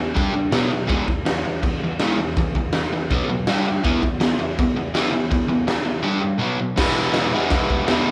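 A crunchy, overdriven electric guitar leads this short garage rock excerpt, playing a bright, picked, double-tracked riff from E2 to G4 that sits up front from the first moment. It rides a straight 4/4 at 163 BPM in E mixolydian, tuned slightly low to A4 = 438 Hz, and the mood is swaggering and raw. A raw acoustic drum kit enters at 0.2 seconds with crash cymbal, punchy kick and a fat snare, its tone dark and smooth with a rolled-off top, heard in a stone-walled room. The riff moves through G5, B5 and E, then B5, G5 and E5, and returns to G5 and B5 before a shift to a new section at 6.8 seconds lands back on E. Light reverb gives the sense of a duo or trio playing live together in one room, and the piece is cut from a longer performance, ending at 8.1 seconds.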